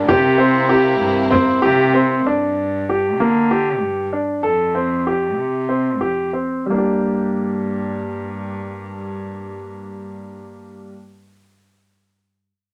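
A clear grand piano sits up front in a moderate studio reverb, its open, long-sustaining arpeggios running through this pensive, hypnotic excerpt of contemporary chamber music in 7/8 at 189 BPM (eighths), in G dorian. A dark, lush string section holds bowed, woody chords with vibrato only until 2.3 s, while a frame drum adds close, dry touches from soft hands until 1.8 s. A rich cello carries the bass with a nasal, reedy gut-string tone in period style, as the tempo slows from 2.3 to 6.7 s over chords moving from C7 through Gm and Fadd9 back to Gm.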